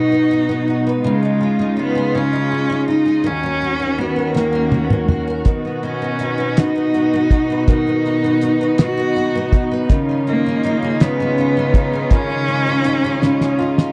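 A swaying 6/8 pop ballad at 54 BPM, this tender excerpt sets a clear, bowed cello melody over full-bodied, double-tracked picked steel-string guitar and rich sustained string-section chords, with a damped, dark 70s drum kit (fat snare, tight kick) entering on a fill at 4.4 seconds and a fingerpicked archtop guitar joining with arpeggios in the background at 5.5 seconds, all captured in a dry, close 1970s-style studio sound with small room reverb.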